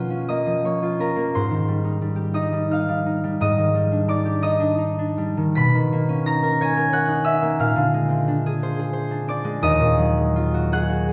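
A ringing, up-front concert harp, fingerpicked and acoustic, plays a graceful, dreamy solo classical fragment in a rubato 6/8 at roughly 52-62 BPM, spanning D#2 to B6 through lush chords such as F#maj7/B, Bmaj9 and A#9 before settling on D#madd9, all bathed in a wet recital-hall reverb.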